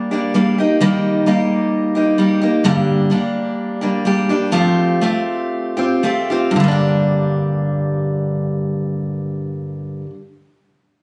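Recorded on a phone in a room with club reverb and compression, this wistful, reflective rock excerpt in G minor at 110-131 BPM features a solo picked steel-string acoustic guitar, full-bodied and up front with light reverb, moving from Gm through Eb, slowing down between 2.6 and 6.6 seconds over Gm and Fadd9 before returning to Gm, and falling silent at 10.2 seconds.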